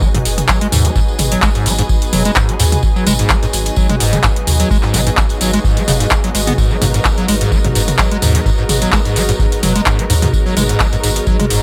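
A dry, close-sounding acid house cut at 128 BPM with a light swing, raw and playful on a single Abm7 chord, where a squelchy, resonant square-wave acid bass riff with a filter sweep, subtle chorus and digital delay pumps against a deep electronic kick, an up-front analog drum machine of handclaps, metallic hi-hats and toms, and a jingly acoustic tambourine, while a saturated triangle sub bass joins at 0.3 s beneath a lush, detuned sawtooth pad of sustained chords and a dark, blurred granular cloud pad drifting in the background with its own reverb.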